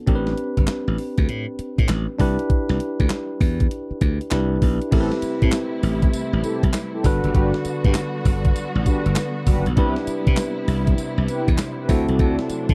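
A bell-like tine electric piano opens this slick, confident new jack swing excerpt, its clean, bright accompaniment ringing in the middle register over an Am11 to Cmaj7 change. Almost at once a glassy slap bass and a clean 12-bit drum machine join. The bass is growly, punchy and up front, and the sampler-style kit brings a thumpy kick, a medium-tuned snare, handclaps, hi-hat, tambourine and crash cymbal, sounding as if re-recorded in a large room and sitting at the front of the mix. The groove has a swung sixteenth-note feel. At 4.9 seconds the second section arrives, adding a dark symphonic string section with lush, bowed, vibrato-rich sustained chords low in the mix, and mellow synth brass stabs that are round, detuned and sawtooth-edged, with a filter sweep and chorus. The harmony moves through Am7, Gmaj7, Cmaj7 and D7, and the production keeps a dry, close 1970s-style studio character.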